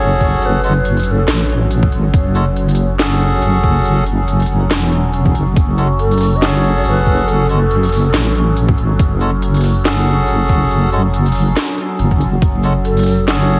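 Cavernous and meditative, this deep dubstep excerpt in F# dorian moves at 140 BPM with a swung half-time feel, built on a dark, up-front wobble bass with chorus, a resonant, slow-blooming drone with chorus and built-in reverb on a held F#madd9, nasal melodica stabs with dub echo, a muffled, pitched-down kick, a garage kit of cracking snare and crisp hats, and a breathy ney with vibrato and dub echo drifting in the background at 0.0, 6.0 and 12.8 seconds, all pressed into a heavily compressed radio sound dusted with vinyl crackle.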